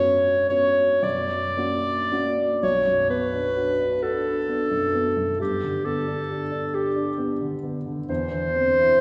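Solemn and yearning, this romantic classical fragment for clarinet and baby grand piano unfolds in a rubato 6/8, with the warm, present clarinet singing the melody up front over a dark, mellow, intimate piano accompaniment whose action noise is audible, both bathed in a wet concert-hall reverb as the harmony moves from F#sus4 and F# to B minor at 2.6 seconds before passing through G and ending on C/E.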